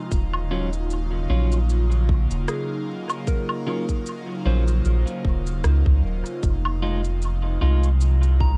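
Ambient dub with a meditative, lightly swung feel, cut from a longer piece and moving from Ebm9 to Fm7 at 6.4 seconds. A deep, round sub bass and a tight electronic kick sit up front, while an electronic shaker, woodblock and rim click carry dub echo, and an airy, breathy pad with chorus and phaser holds sustained chords beneath a soft FM bell whose background arpeggios add chorus, phaser, 12-bit sampler grit and tape echo. From 0.5 seconds an electric guitar at the edge of break-up plays compressed, picked stabs through dub echo, within a dark, dry production.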